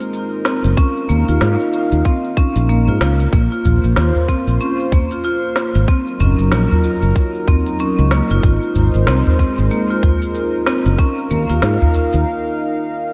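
Soaked in lush hall reverb, this dreamy, mystical organic downtempo excerpt sets a dark, sawtooth-edged analog pad with chorus and sidechain pumping beneath smooth marimba arpeggios trailing diffuse ambient delay, while a round, up-front fretless bass enters at 0.6 seconds, a tight overdriven electronic kick joins at 0.8 seconds, a woody snare, crisp hats and shaker from an overdriven electronic kit carry the swung groove, and a small, distant udu sits in the background from 3.6 to 11.9 seconds, ahead of a brief break at 12.3 seconds.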